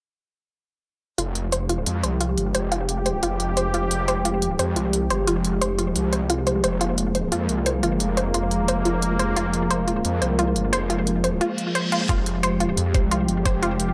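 A moderate plate reverb and sidechain pumping on the synths give this mechanical, dark technical drum and bass fragment its restless, breathing sound, with an airy, evolving sawtooth pad and a thick, detuned saw bass with overdrive sitting up front from 1.2 seconds on a single Fmadd9 chord. Crisp, small-room electronic hi-hats tick beneath a round analog pluck whose bright arpeggios carry chorus, digital delay and a filter sweep. A reverse cymbal enters at 11.5 seconds and hands over to a knocking, layered electronic kick at 12.1 seconds.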